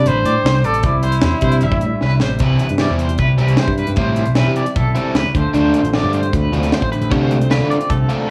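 Math rock and midwest emo at 153 BPM in C major, intricate and bright, opening with a clear trumpet melody with vibrato and digital delay over twangy, tremolo-shimmering guitar arpeggios, a background guitar through a small old amp bathed in lush chorus, a growly up-front picked bass, and a crisp, airy fusion kit with a high-tuned snare and punchy kick. The trumpet stops at 2.2 seconds, and after a drum fill a double-tracked, overdriven guitar riff bites in up front at 2.4 seconds as the harmony moves from Cmaj9 to Dm7. A worn cassette-tape character with warbly pitch drift, light reverb and small room ambience colours this short cut from a longer piece.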